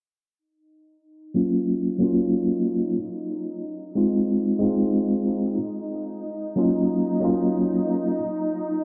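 Trip hop with a smoky, brooding air and a lazy swing, cut from a longer piece, built on a worn, slightly out-of-tune tine electric piano that sits up front, lightly overdriven through a combo amp with harmonic tremolo and tape echo, while a filter sweep runs across it from 0.4 seconds onward. A faint bowed-like drone enters first at 1.2 seconds, nasal and tense with a detuned sawtooth edge, vibrato, a noise layer and its own reverb, holding one note to 8.8 seconds beneath the piano, which comes in just after at 1.3 seconds. The mix is echo-heavy and filtered dark, with light digital ambience, as the chords move between Ebm7 and Ab6 before the piano stops at 8.2 seconds.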